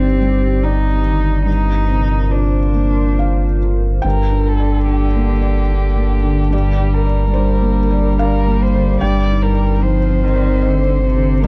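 A neoclassical piano-and-strings fragment in a slow, rubato 3/4, cut from a longer piece and carrying a fragile, longing mood. A felt-muted upright piano supplies the accompaniment throughout, its thick felt giving a soft, intimate tone with audible action noise, while a single muted cello, played con sordino with light vibrato, portamento and a soft attack, traces a veiled second line from a distant position. Beneath them a round sine sub bass sits up front on a deep G, and a detuned analog pad built from square, sawtooth and triangle waves with a sub octave holds slow-attack chords in the background, colored by chorus and phaser. At 4.1 seconds a single muted violin enters close with the melody, its bowed, vibrato-touched line staying within a narrow upper range. The harmony moves from Cmadd9/G to Bbadd9/G and back, and the dry, dark production keeps the voices hushed.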